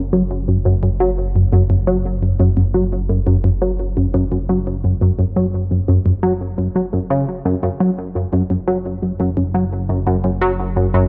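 An up-front, tightly sequenced sawtooth synth riff with a detuned, mellow filter pluck, chorus and delay drives this cosmic, mysterious passage of ambient space music in straight 4/4, set over a fat, thick analog bass with a sweeping filter and a soft-topped mix bathed in light reverb.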